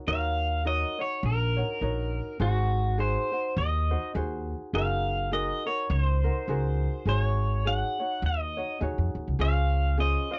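Languid and sunny, this short Hawaiian excerpt sways at 103 BPM in 4/4 with a gentle swing, moving through Ebm7, Ab7, Gb69 and Ab7sus4 before settling on Dbmaj7. A twangy, clean electric pedal steel guitar carries the melody up front, played with fingerpicks and slide and shaped by compression and volume swells, while an acoustic ukulele adds light fingerpicked accompaniment. A woody pizzicato upright bass with steel strings sits prominently beneath them, all captured in a dry, close 1970s-style studio sound.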